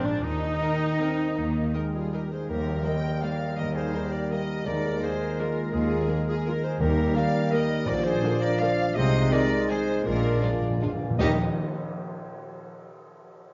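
Festive and elegant, this excerpt from a classical orchestral ballroom waltz in a rubato three-time sways as lush symphonic violins carry the melody over a background chamber violin section, pure flute, mellow clarinet and cor anglais, very quiet violas, a ringing harp in arpeggios, expressive cellos, double basses with portamento, and sustained French horn chords, while tight, very quiet trumpet stabs appear briefly, a dark bassoon joins at 2.5 seconds with a dry tam-tam accent, and round soft-mallet timpani enter at 4.7 seconds to lead a fill into the final accent at 11.2 seconds, all set in a dark production with moderate scoring stage reverb.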